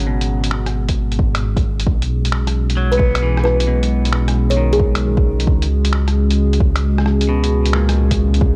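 A short cut from a longer future garage piece at 133 BPM in 4/4 with a swung sixteenth-note feel, it opens on a clean, twangy electric guitar, a dark analog pad with slow-blooming chorused chords, and a rumbling, detuned saw bass sitting up front, all three breathing with sidechain pumping. The guitar's picked accompaniment is trailed by tape echo, while the harmony moves from G#m to Bsus2 and then C#7(no3). A muffled, pitched-down lo-fi kit of finger snaps, hi-hat and rim click carries overdrive and 12-bit sampler grit. A deep, overdriven electronic kick with the same grit enters at 0.9 seconds and punches forward as the loudest part. At 2.9 seconds a woody, hollow kalimba plays a brief thumb-plucked melody through tape echo, falling silent at 5.3 seconds. Light reverb and a cassette-tape haze give the whole a rainy, ghostly mood.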